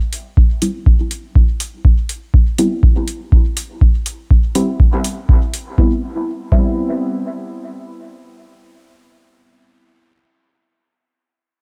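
Hypnotic and meditative, this short dub techno cut moves at 122 BPM in a straight 4/4, built on a deep, analog electronic kick sitting up front and metallic hi-hats that tick until 5.6 seconds. A deep, mellow chord stab carries a rootless Am7 from 0.6 seconds on, its soft, warbling, detuned tone coloured by chorus, phaser, sidechain pumping and dub echo, with a filter sweep across the opening section. The dry mix keeps the dark, vintage stab and the kick close, and the stab rings on alone after the kick stops at 6.7 seconds.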